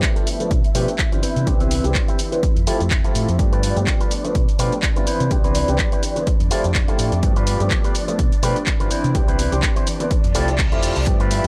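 A punchy, up-front electronic kick drives this joyful, feel-good filtered disco house excerpt at 125 BPM in 4/4 with a light 16th-note swing, joined by an analog drum machine's handclaps, hi-hat and shaker, and a dark, round, hollow-body fingered bass from 0.5 seconds. Over a G7, Cmaj7, Fmaj7 progression in G mixolydian, a smooth, vintage grand piano plays accompaniment while a twangy, clean, picked electric guitar with an envelope filter and spring reverb plays a riff, and a swirling, warbling string machine holds soft-attack chords with chorus and phaser in the background. A filter sweep runs across the whole dry, gritty recording with sidechain pumping on the piano, strings, guitar and bass, and a reverse cymbal rises in at 10.3 seconds.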